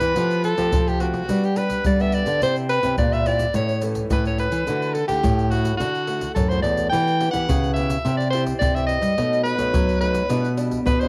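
Recorded at home on cassette with moderate spring reverb and a small-room ambience, this festive, joyful samba-and-choro passage at 107 BPM puts a forceful, edgy soprano saxophone up front, playing the jazz-style melody with vibrato and scooped notes, over a fingerpicked nylon-string guitar giving classical-style accompaniment, a second, darker nylon-string guitar fingerpicking the bass line with audible finger squeak, and close, dry egg shaker, tight surdo and pandeiro, as the harmony travels from Fadd9 to Em7/B.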